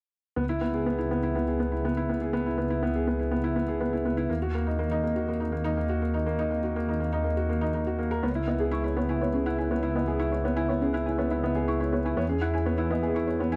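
A felt-muted upright piano, intimate and boxy with audible action noise and a touch of delay, plays a riff over a deep, rumbling detuned saw bass from 0.4 s in this hypnotic 122 BPM electronica fragment in C# dorian, moving through C#m7, D#m and E, before a round, chorused pluck enters in the background with delayed arpeggios at 8.2 s, all set in a wet echo-chamber reverb with small-room ambience.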